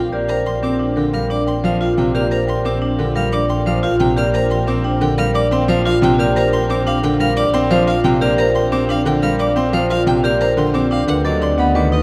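Hypnotic and propulsive, this excerpt of minimalist classical pattern music in 6/4 sets a vintage, band-limited marimba melody over a warm bowed double bass with soft attack and vibrato, while a single violin spins expressive, smooth-topped arpeggios with portamento above. A brilliant baby grand piano accompaniment and metallic, ringing vibraphone arpeggios struck with hard mallets join at 0.1 s, with the vibraphone's tone bright and mid-forward. The ensemble floats in a vast, echoing space under a huge ambient reverb, and the harmony rests on Bb6 before shifting to D7b9 at 11.1 s.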